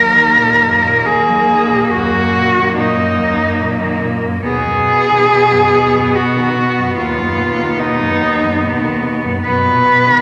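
Moving in a flexible, rubato 3/4 at about 71 BPM, this serene classical fragment for cello ensemble is cut from a longer piece and spans just over 10 seconds. Four bowed cellos, one player to a part, play together throughout, with the top cello carrying a lyrical melody up front, its soft attacks, vibrato and expressive portamento giving the line a singing quality. Beneath it, a second cello holds a smooth, even inner line with light vibrato, set back at a distance in the blend. Two close-miked cellos fill out the lower register, one supplying accompaniment and the other a deep bass, both even and rich with vibrato. The harmony rests on E-flat minor before shifting to B/D# at 4.4 seconds and settling on Bmaj7/F# near the end, all bathed in a lush scoring-stage reverb that lends the ensemble a warm, spacious glow.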